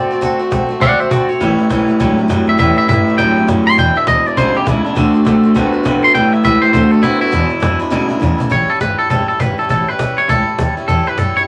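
Vinyl crackle sits over a wet club reverb, giving this short rockabilly cut an upbeat, rowdy, lived-in sound. It swings at 202 BPM in 4/4, set in A mixolydian and moving through D7, A7 and E7. A clean, twangy electric guitar carries the melody up front as a solo from the start. Beneath it, a boxy picked acoustic guitar supplies swing-style accompaniment, a woody upright bass with gut strings plays thumpy pizzicato lines, and a snappy, close cajon keeps time. At 1.4 s a second electric guitar, played through a small old amp, enters with a slightly broken-up, lo-fi riff. That guitar drops out at 8.5 s, just after a cajon fill from 7.9 s, as the piece moves into a new section.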